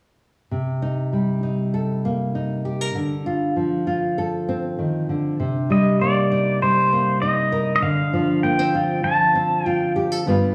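A straight 4/4 pulse at 98 BPM carries this reflective, haunting acoustic folk excerpt in C dorian, where an up-front, fingerpicked nylon-string guitar in classical style moves between Cm7 and Dm7 from 0.5 seconds, before a clean, compressed electric pedal steel guitar enters at 5.7 seconds with a slide melody played with fingerpicks and shaped by volume swells and plate reverb, the whole duo heard from further back in a large, wet-sounding studio room.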